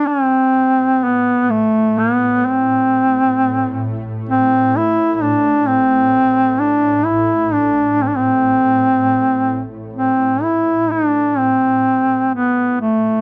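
A dry, close recording with a 1970s studio character frames this solemn, mournful Caucasian lament, cut from a longer piece and flowing in a rubato 3/4. A warm duduk carries the melody up front from the start, its folk-style line coloured by vibrato and scooped notes. At 1.1 seconds a soft granular cloud pad enters underneath as a low, blurred drone, its cloudy, evolving haze softened by its own reverb.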